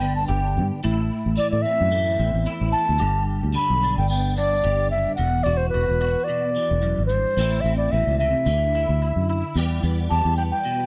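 A dry, close recording with a 1970s studio character and light reverb frames this warm, danceable highlife guitar band excerpt at 110 BPM in E minor, with a gentle swing on the sixteenths. An airy baroque flute with vibrato and a crisp attack carries the melody up front through a tape echo, over a bright, compressed clean electric guitar treated with ensemble chorus and a round, foam-muted fingered bass that stays dark and direct. The opening part moves between G and Am chords, then at 5.2 seconds the music shifts to colored Emadd9, Amadd9 and Dadd9 harmonies before settling on Em, with the bass stopping at 10.5 seconds just before the cut.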